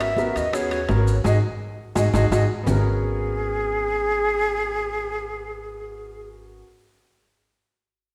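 Heard in a church or concert hall with moderate reverb, this fiery, driving Afro-Cuban jazz fragment in G# minor moves at 169 BPM over a G#m11 chord, with a breathy, expressive flute melody up front, its tongued notes carrying vibrato, beside a woody pizzicato upright bass. A concert grand piano with deep bass accompanies. Bright congas, ringing metal-shelled timbales, very quiet high-tuned bongos and grainy maracas drive the groove through a band accent and a drum fill, then drop out at 2.8 s, leaving flute, piano and bass to carry on until they stop between 6.3 and 6.7 s.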